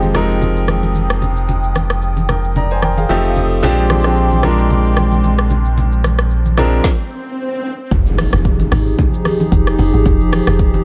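A clear, intimate concert grand piano opens this soulful, deep amapiano passage at 112 BPM in F dorian, playing accompaniment chords over a hollow, flute-like pad that is softened by chorus and a round, up-front analog bass. An electronic afro-pop drum kit sets a lightly swung 4/4 groove with a deep kick, woody snare, metallic hats, rim click and shaker, while low-tuned congas with a thick skin sit in the background. The harmony moves from Fm9 through F7 to Bb13 before the piano and analog bass stop at about 6.8 seconds, leaving the pad, drums and congas as an electronic swell builds in the background. At 7.9 seconds the drop lands with an impact and a dark, percussive log drum bass that takes over the low end, carrying the groove back to Fm9. The sound is dry, with the polished piano's action noise audible up close. The passage is cut from a longer piece.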